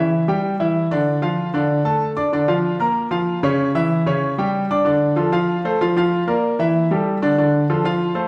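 A clear baby grand piano plays alone from the very start, opening an 8.3-second cut from a longer Latin piece in D minor at a brisk 190 BPM in straight 4/4. The mood is danceable and fiery, with the piano covering a span from C#3 to D6. Its sound is intimate and natural, sitting up front with audible action noise that brings the instrument close to the listener. A wet large-studio reverb with a 1.3-second tail surrounds the playing, giving the feel of a band performing live in one room. The harmony moves through a rootless C# diminished, D minor, B-flat and back to C# diminished in the opening part, and from 4.8 seconds a second part moves quickly through D minor, F, B-flat and an open A fifth before landing back on D minor.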